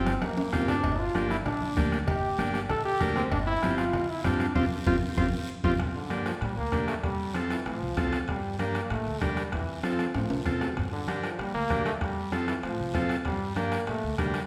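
Passionate and fiery, this latin cumbia excerpt moves at 193 BPM in a straight 4/4, set in G dorian and cut from a longer piece. A bright, punchy trombone sits up front and carries a solo from the start, its pop-style tone smooth on top with a light vibrato, ranging from D3 to A4. Behind it, an overdriven combo organ supplies buzzy, vintage accompaniment, while a woody pizzicato upright bass with steel strings anchors the low end between G1 and Bb2. The percussion bed combines a soft-beater bombo with a band-limited character, low-tuned ringing congas and metal-shell cowbell and timbales set in the background, and a raspy guiro heard close and dry. Harmony moves from Csus4/G to Gm and back to Csus4/G, then alternates between Gm and F in the second section. Drum fills arrive at 0.1, 4.6 and 10.1 seconds, and a band accent from 4.6 to 5.8 seconds leads into the second section. Everything sits in a recital hall reverb with a 1.5-second decay, giving the performance the resonant air of a church or concert hall.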